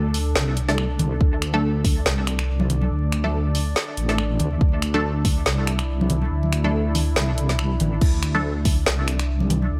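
Meditative and dark, this deep dubstep excerpt moves at 141 BPM in a swung half-time 4/4, built on a deep, up-front wobble bass with chorus and tube saturation beneath a moody sawtooth ambient pad whose slow-attack chords sustain with chorus and reverb. A muted, resonant filtered chord stab with phaser and dub echo plucks briefly through the first 8.5 s, while a layered deep house kit puts its woody snare, dark hi-hats, finger snaps and crash cymbal up front. Damped, thick-skinned congas sit in the background from 1.0 s, a deep electronic kick lands three times starting at 1.2 s, and a bed of vinyl crackle supplies the digital ambience.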